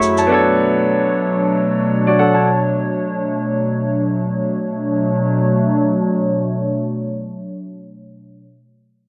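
A clear, polished grand piano and a hollow, flute-like pad open this late-night amapiano excerpt in free time, settling on a Bm9 chord in B minor under a filter sweep that runs until 4.6 seconds. The up-front piano, with its deep bass and low-pass filtering, drops out at 2.6 seconds, leaving the airy, mellow pad to sustain its chorused chords until 8.5 seconds. Light digital reverb and the warbly pitch drift of worn cassette tape give the whole deep fragment a warbling, old-tape character.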